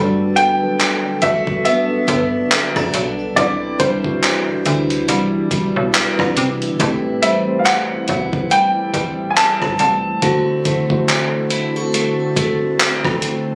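This late-night contemporary R&B fragment opens at 0.0 s with muted, felt-like synth keys and a picked steel-string acoustic guitar playing arpeggios through digital delay, alongside a snappy FM bass with a metallic attack. Within the first second an ethereal, very quiet pad rises underneath in detuned unison, while a dusty sampler-style kit with a thumpy kick, hi-hat, rim click and handclaps sits gritty and up front. A natural-sounding baby grand piano carries the longing melody high in its range, also touched by digital delay. At a slow 70 BPM in 4/4 with a light sixteenth-note swing, the harmony moves through Gmaj7, Cmaj7, Am7 and D7 in A dorian. The bass drops out at 10.1 s and the piano at 12.3 s, leaving the keys, guitar, pad and drums to close out this cut from a longer piece, all heard as if captured on a phone in a club-like room with light reverb.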